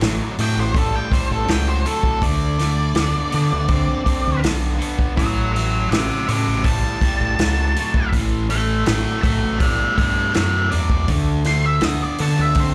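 Blues rock power trio with a southern rock edge, this raunchy, gritty 81 BPM excerpt captures a live club gig where a dark, fuzzed octave-fuzz lead guitar solos up front from 0.4 seconds over a bright, double-tracked distorted rhythm riff with slapback echo, a growling overdriven fingered bass, and a punchy vintage drum kit of kick, snare and hi-hat with a rolled-off top, moving through A7 and D5 chords.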